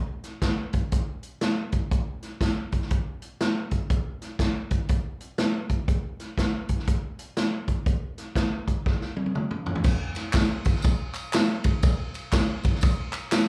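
Gospel with a jubilant yet reverent spirit, this short cut from a longer piece moves at 121 BPM in 4/4 with a 63% swing on the eighth notes. A swinging big-band drum kit carries the whole passage from 0.2 seconds, its roomy, up-front sound built from crash and ride cymbals, hi-hat, a medium-tuned snare, toms and a boomy kick. At 8.9 seconds the drummer plays a fill that leads into a new section at 9.8 seconds. There a tambourine-and-handclap part enters, with maracas and a group of handclaps sounding close and dry, set in the background behind the kit. The performance has the feel of a live gig heard through the venue's PA, with a moderate club reverb giving the room a lively sense of space.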